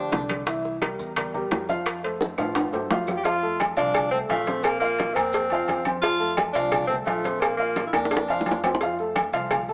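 A worn, long-sustaining baby grand piano and a dark, woody plucked upright bass open this joyful, danceable salsa cut in F major at 173 BPM, with a brief tenor saxophone note as ringing metal-shell timbales and agogo bells, tight high-tuned bongos and cowbell, low-tuned congas, grainy maracas and very quiet claves join. The up-front tenor saxophone returns at 3.2 seconds for a roomy solo melody with light vibrato, while drum fills land at 2.4 and 7.9 seconds. The sax and piano carry a cassette tape colour, and the whole home recording has a small-speaker sound in moderate spring reverb.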